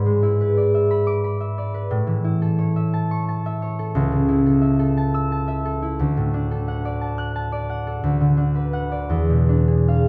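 A solo concert harp carries this short classical excerpt, its thumb-plucked strings ringing with a warm, acoustic tone placed up front in the sound. The mood is graceful and dreamy, moving in a lilting 6/8 at about 59 dotted-quarter beats per minute, with uneven beats and a rubato feel that lets the time breathe. Set in A major with the instrument tuned slightly below standard pitch to A4 = 437 Hz, the harp spans a generous range from deep C#2 up to a bright F#6. The harmony opens on E7/G#, settles onto A at 1.9 seconds, passes through D at 6.0 seconds, and closes on a tense E7b9 at 9.1 seconds. A moderate recital hall reverb surrounds the harp, giving each note a gentle halo as this fragment of a longer piece drifts by.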